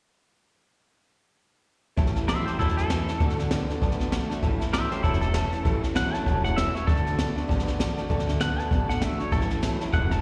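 A rollicking, upbeat rockabilly cut in A major at 196 BPM with a swung 4/4 feel opens at 2.0 seconds with up-front brushed drums and a boomy kick, a thumpy gut-string upright bass, a slightly broken-up twangy riff guitar from a small old amp, and a background steel-string acoustic guitar with finger squeak and a boxy, slightly detuned upright piano, all three echoing with slapback, before a bright, compressed clean electric guitar takes the melody from 2.3 seconds through slapback and analog delay, the whole band heard live through a venue's PA in a recital-hall reverb over simple A–D changes.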